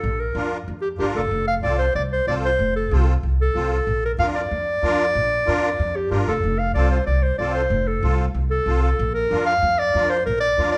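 A close-miked clarinet in classical style carries the melody from the first beat over a woody, pizzicato upright bass with steel strings, both up front, in a festive, joyful Latin number at 188 BPM in F major. At 0.3 seconds a reedy musette accordion joins lower in the mix, its wet tuning shimmering behind the tune as the harmony moves between Bb and F. The band plays live together in a large studio with moderate reverb, and this short fragment is cut from a longer piece.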